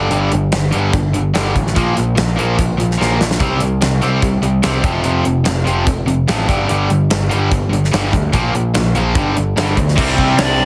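Heavily compressed and radio-like with light reverb, this anthemic, energetic hard rock excerpt drives along at 146 BPM in a straight 4/4, moving through power chords on G, B-flat, C and F. Two bright, picked guitars play the riff from the start, one overdriven, the other distorted and set in the background, over a punchy, direct picked bass and an up-front gated 80s drum kit with a big, airy room sound, tight kick and medium-tuned snare, which plays a fill at 3.0 seconds. At 10.0 seconds a scooped, double-tracked high-gain guitar joins the riff in the background, and at 10.4 seconds a warm lead guitar through a small cranked amp enters with a high melody, alongside a dark octave-fuzz second line.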